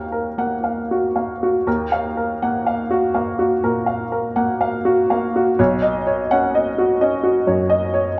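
Neoclassical minimalist piano in a free, rubato 4/4, this intimate, reflective fragment cut from a longer piece features a solo upright piano, worn, woody and slightly detuned with short sustain, placed up front in a large studio's moderate reverb, moving from Ebmadd9 to Badd9 at 5.6 seconds.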